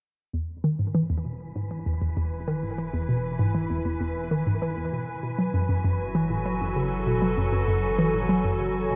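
A hollow, bouncy square-wave pluck sits up front from 0.3 s, carrying a riff in the low register through chorus and analog delay while a filter sweep shapes it, as a round, deep analog bass fades in beneath it in this luminous, expansive piece of ambient, sequencer-driven space music at 98 BPM in E major. At 1.1 s an evolving, detuned wavetable pad with chorus joins, holding morphing sustained chords as it fades in, and from 1.3 s a breathy, wind-like tuned noise texture drifts in the background. The harmony moves from E to F#madd9 at 5.2 s, all of it bathed in a huge ambient reverb with a long 7.6 s tail.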